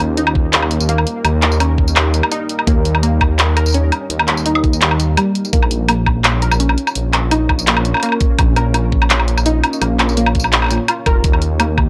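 Half-time drum and bass at 168 BPM in Bb dorian, this short cut from a longer piece feels spacious and tense, moving from Eb to Bbm and back to Eb across two matching sections. A dark detuned saw bass sits up front from the start, its deep, rumbling sawtooth tone beating and saturated, sustaining over a sine foundation. Behind it, a moody ambient pad holds sustained chords in the background, with a slow attack, long release, vintage warble, chorus and built-in reverb, pumping against the sidechain. A warbly, dusty pluck plays arpeggios through analog chorus and analog delay, its lo-fi, wave-folded tone evolving under a filter sweep. The layered electronic kit enters at 0.2 s with bright hats, handclaps, tambourine and woodblock, joined at 0.4 s by a knocking electronic kick, both re-recorded in a small room and placed up front, with a brief break at 5.2 s before the second drop. The whole mix carries a dry, gritty hardware character with transformer saturation, cassette tape texture and light digital ambience.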